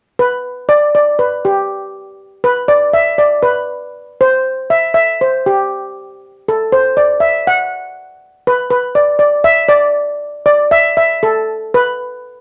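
A straight 4/4 pulse at 120 BPM drives this festive, bouncy calypso fragment, where a solo double seconds steel pan, played with soft rubber sticks, sounds metallic and shimmering yet mellow and up front between G4 and F#5 from 0.2 to 12.2 s, moving into a new section at 8.5 s, wrapped in light reverb and the warbly pitch drift of worn cassette tape.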